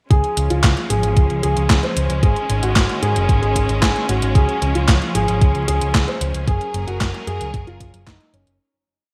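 A bright 1980s-style digital production with vinyl crackle and a lush hall reverb frames this short, danceable and romantic Italo disco piece in Db major at 113 BPM, moving through Db, Absus4 and Gbadd9 before fading out from 5.8 to 8.6 seconds. A dark, mellow concert grand piano with delay plays a repeating riff melody over a clear, bowed studio string section holding lush sustained chords with vibrato. A round, amped picked electric bass with an envelope filter runs a sequenced sixteenth-note line, while a thumpy, overdriven four-on-the-floor electronic kick and a clean 12-bit drum machine with gated reverb, playing handclaps, closed hi-hat and snare, drive the disco beat.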